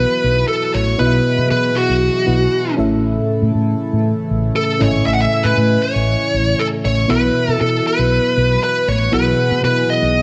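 Pop with a nostalgic, uplifting mood, this short cut from a longer piece moves in a straight 4/4 feel. A bluesy overdriven lead guitar carries the melody up front, its picked, distorted tone dark and biting. Beneath it, a mellow FM electric piano plays round, full-bodied accompaniment with a fast, decaying attack and a touch of chorus. A chorused pulse-width pad holds shimmering, retro sustained chords with a soft attack, and a fretless electric bass anchors the low end with an amped tone and lush chorus. The harmony shifts from Bsus4 to A at 2.8 seconds and returns to Bsus4 at 7.1 seconds, set in light reverb and digital ambience.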